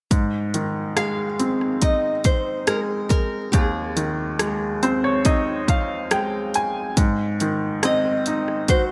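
A punchy, overdriven house drum kit anchors this tender, heartfelt pop ballad excerpt at 70 BPM in straight 4/4 and Ab major, its layered electronic kick, bright hi-hat and rim click sitting up front and treated with gated reverb. A woody, brilliant upright piano accompanies throughout and plays a fill from 4.4 to 7.0 seconds, while a fingerpicked nylon-string guitar enters at 1.0 second with a warm classical melody. A moderate plate reverb and bright 1980s-style digital production give the piece its sheen.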